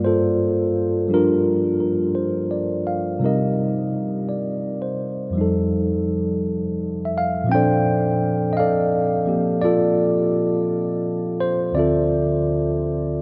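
A vast, echoing space surrounds this recording, its wet cathedral reverb lingering for 6.8 seconds. The piece is a smoky, intimate jazz ballad at a slow 56 BPM in 4/4, with a 69% swing on the eighth notes and tuning set to A4 = 441 Hz. A single tine electric piano carries the whole fragment from 0.0 to 13.2 seconds, its clean tone heard through a combo amp and placed up front, spanning from D2 up to G5. The harmony drifts through Gm9, Cm7 and F9 before the passage shifts at 7.5 seconds to a second section built on Bbmaj9, settling onto Dm7 at 11.7 seconds. Cut from a longer piece, it feels like a late-night moment suspended in a glowing haze.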